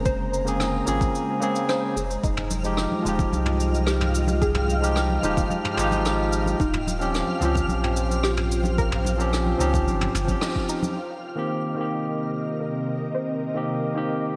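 Sunset chillout in F minor at 110 BPM, smooth and wistful, with a barky tine electric piano up front carrying the chords through digital delay over an ethereal, detuned pad, a round sine sub bass, and a soft, dark pluck tracing arpeggios in the background. A deep, overdriven electronic kick and a vintage brush kit with cabasa, rim clicks and rolled-off toms drive the groove, while ringing congas and a twinkling granular shimmer enter around 2.5 seconds. A band accent lands at 10.4 seconds before the kick and bass drop away, leaving the keys, pad, pluck and brushes to drift over a Cm7 in a lush hall with bright 1980s-style digital sheen.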